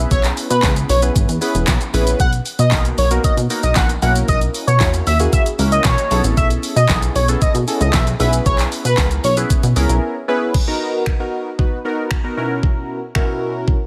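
Upbeat and euphoric, this dance-pop excerpt moves at 115 BPM in a straight 4/4, set in B major and cut from a longer piece. Warm, round analog keys carry the accompaniment with detuned sawtooth tones, a filter sweep, chorus, phaser and sidechain pumping, moving through chords such as C#m7/B, Bmaj7, F#7/B and Amaj9. Up front, a punchy, funky analog bass built from wave-folded sawtooth, square and sine tones gives a mellow filter pluck with a fast attack that decays, pumping with the sidechain until it stops at 10.0 s. Above them, a bold, retro octave-doubled sawtooth lead sings the melody with vibrato, a moving notch, chorus and tape echo, holding its notes until 9.4 s. A smooth, produced R&B drum kit sits forward with a knocking kick, fat snare, warm hats, finger snaps, handclaps, shaker and crash cymbal, re-recorded in a small room. The drop runs to 10.5 s, with a brief break just before it gives way to a closing section of keys and drums in a digital ambience.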